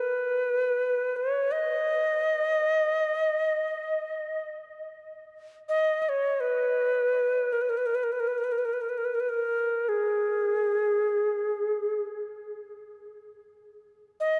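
In free time, this haunting, meditative world piece sets a lone Native American-style cedar flute up front, its bright, reedy, woody tone carrying vibrato, a pure core and a chiff on tongued notes between G#4 and D#5. A huge ambient reverb with a 5.0-second tail surrounds the flute within a dark, warm production, in a 14.4-second clip cut from a longer piece.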